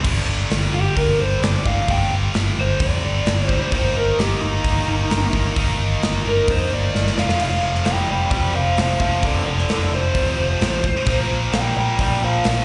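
A dark, overdriven lead guitar through a small cranked amp sits up front from 0.7 seconds, carrying the solo melody with slapback and tape echo over an aggressive, driving hard rock riff in G minor at 131 BPM. Beneath it, a double-tracked, compressed distorted guitar in the background, a bright high-gain guitar with slapback echo and a very quiet tight distorted guitar play the riff, while a growly, punchy picked bass and a gated 80s kit with bright cymbals, a medium-tuned snare and a punchy kick push the straight 4/4 groove, with a drum fill at 6.9 seconds. This fragment of a longer piece sounds like a live gig heard through the venue's PA, with recital hall reverb and a dulled top end.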